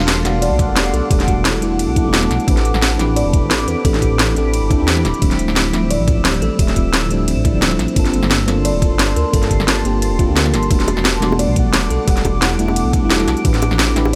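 A straight, rolling liquid drum and bass groove drives this lush fragment of a longer piece, built on a knocking electronic kick and an up-front kit of cracking snare, crisp hi-hats and ride cymbal, both re-recorded in a small room. Underneath, a deep, rumbling detuned saw bass sustains with a beating, dark edge, while a mellow FM electric piano supplies round, full-bodied accompaniment treated with chorus, phaser and dub echo. A shimmering, ethereal pad holds slow-attack chords that evolve with an octave-up sheen and granular texture, bathed in its own reverb and pumping against the sidechain. Kalimba arpeggios sit in the background from 0.4 seconds, woody and ringing with vintage 12-bit sampler grit and dub echo. Late in the passage, at 10.9 seconds, tight, high-tuned bongos join with soft hands, close and dry, as the minor eleventh harmony cycles through its lush progression.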